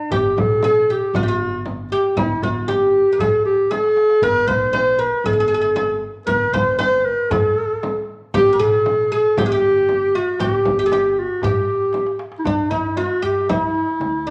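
Passionate and festive, this Arabic maqam ensemble piece moves at 117 BPM in a straight 4/4, set in G maqam huzam, and is cut from a longer performance. A mellow clarinet carries the melody up front as a close-miked solo, its jazz-style phrasing coloured by vibrato, subtone and scooped notes. Beneath it, a bright, fretless oud plucked with a plectrum plays a second line in the same register, its double strings giving a woody, deep ring. An upright bass adds thumpy pizzicato on gut strings, while a deep, large frame drum and a crisp metal-shell darbuka, played with soft hands and sitting in the background, keep the percussion close and dry. Drum fills mark 3.7 s and 11.9 s, and a new section begins at 12.5 s, after the darbuka drops out, all within a moderate, large studio reverb.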